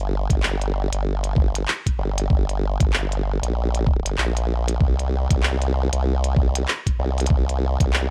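A saturated, wobbling formant-filtered bass sits up front from the start, its sawtooth and sine tones sustained and compressed with a chorus sheen as it moves between G1 and C2. A gritty, pitched-down kick with a tape-warm thump joins at 0.3 seconds alongside a clicky electronic kit of handclaps and hi-hats caught in a small room. This swaggering, playful glitch hop excerpt rolls in 4/4 with a swung sixteenth-note feel and a dry, close sound.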